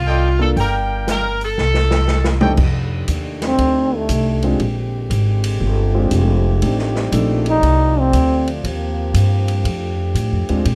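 A joyful, swinging big band jazz excerpt in F mixolydian at 119 BPM opens with an edgy, tight saxophone section carrying the melody up front over a woody pizzicato upright bass, while a clear trumpet section adds stabs and a dark concert grand piano with audible action noise comps beneath. The swinging drum kit comes in at 0.6 seconds, with a punchy kick, medium-tuned snare, hi-hat, ride, crash and toms, and plays a fill just before the horns hand over. From 2.6 seconds a mellow trombone section holds sustained chords while a close-miked solo trombone, with a soft attack, vibrato and scooped notes, sings short phrases in its middle register. The piano drops out at 7.4 seconds, leaving bass, drums and the trombones to carry the groove through changes moving between F13, Bb13 and Cm7. Light reverb and a dark production give the ensemble an intimate studio feel.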